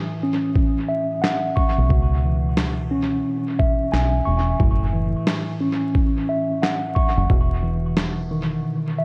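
A mellow, clean tine electric piano opens this moody, dark boom-bap hip-hop excerpt in F# dorian, its cassette-tape tone filtered and trailed by dub echo over F#m7, C#m7 and Emaj7(no3) chords, before a gritty, pitched-down sampler-style kit arrives at 0.6 seconds with a thumpy kick, medium-tuned snare and handclaps in a compressed small-room sound, and a dark, round, foam-muted fingered bass enters at 1.8 seconds, all riding a swung 89 BPM groove in an echo-heavy mix with light reverb and vinyl crackle.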